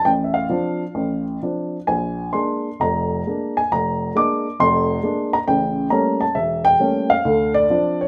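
Smoky and moody, this short solo jazz excerpt moves at 134 BPM in D minor with a swung, rubato feel, cut from a longer piece. A dark upright piano plays alone for the full 8.1 seconds, spanning a deep low register up into the treble, its woody, mellow tone sitting up front with audible action noise that lends an intimate, vintage character. The harmony passes from Dm7 through Bb7 and A7b9 back to Dm7, all wrapped in a moderate club reverb.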